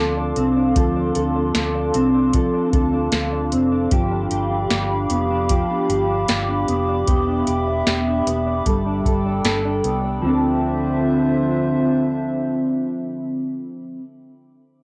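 A mellow electric guitar stands out at the front, its dark, clean, compressed tone tracing arpeggios through analog chorus and tape echo, with a cassette tape coloring that adds to the nostalgic haze. This is a melancholic, ethereal dream pop excerpt in D dorian at 76 BPM in a straight 4/4, moving through Dm7, G7, Em7 and Gadd9 before returning to Dm7 as a second section begins at 10.2 seconds. Alongside the guitar, a warbling, detuned tape-like pad holds sustained chords with a slow attack and long release, its lo-fi character thickened by chorus and built-in reverb. A soft vintage rhythm box enters at 0.4 seconds with a deep kick, crisp snare and metallic hats, re-recorded in a small room, and stops at 10.0 seconds. A foam-muted, round fingered bass with transformer saturation sits low in the mix, and the whole piece carries the intimate feel of a home recording on cassette, bathed in a short, wet small-room reverb.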